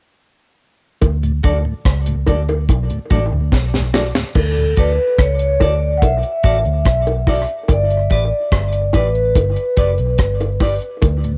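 A hazy home cassette recording with light reverb carries this laid-back dub reggae excerpt, built on a dry, up-front drum kit with dark cymbals, a high-tuned snare and tight kick, a round, foam-muted fingered bass, and soft-handed bongos touched with tape echo. A mellow tonewheel organ turning through a slow rotary speaker sits in the background, while a clean semi-hollow electric guitar adds picked accompaniment soaked in echo and plate reverb. A drum fill at 3.5 seconds leads into the second part, where a ringing vibraphone with motor vibrato carries the melody from 4.4 seconds, and the harmony moves to G at 7.7 seconds.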